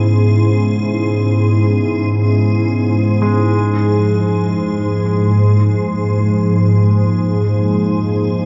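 Heard through worn, warbly cassette tape and a huge ambient reverb, this brief dark ambient drone, cut from a longer piece, unfolds in free time with an ominous mood, moving from C#m to Fm. An up-front, organ-like drone with ensemble chorus holds a low G#2 beneath a deep, moody analog pad of sustained chords and a faint, crystalline glass pad touched with shimmer. At 3.2 s a brilliant concert grand piano enters with arpeggios, colored by delay and shimmer reverb.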